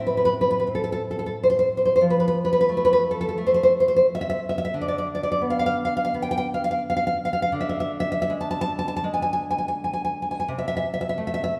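A freely flowing rubato pulse in 4/4 drifts between 72 and 91 BPM, giving this short romantic excerpt for solo classical guitar a wistful, passionate feel in A minor. The nylon-string guitar plays alone for the full 11.6 seconds, fingerpicked and up front, with a full-bodied, deep classical tone spanning A2 to A5. The harmony moves from Am to F at 2.0 seconds, then through Dm6 and E7/D before settling on Am/C at 10.5 seconds. A wet recital hall reverb with a 1.8-second decay surrounds the instrument, lending the sense of a church or concert hall. The tuning sits slightly low, at A4 = 439 Hz, and the passage is cut from a longer piece.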